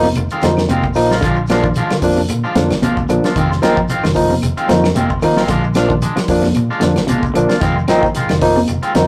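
A bright, barky tine electric piano sits up front over twangy, slightly broken-up guitar stabs, a round fingered bass, high-tuned ringing congas and a grainy shekere, joined within 0.2 seconds by a clean guitar arpeggiating through tape echo, a cloth-damped thuddy drum kit and faint woody claves in this intense, defiant afrobeat excerpt at 113 BPM, swinging lightly over Fm7 and Bb7 in F dorian with a rough, tube-saturated rehearsal-room sound.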